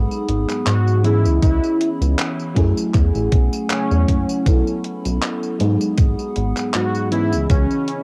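Vaporwave in F# dorian at 79 BPM with a gentle 16th-note swing, this hazy, melancholic fragment of a longer piece opens on a lush, dreamy FM electric piano with a soft pad layer, soaked in chorus, cassette tape and tape echo, over a warbling, nostalgic pad sitting dark in the background and a glossy, nasal chorused synth bass up front, while a detuned 8-bit drum machine brings handclaps, hi-hat and tambourine from 0.1 s, a velvety lead with vibrato carries the melody from 0.7 s, and a thumpy electronic kick joins at 1.4 s, all moving through G#m7, C#m7, F#m9 and B7sus4 with the lo-fi feel of a home cassette recording.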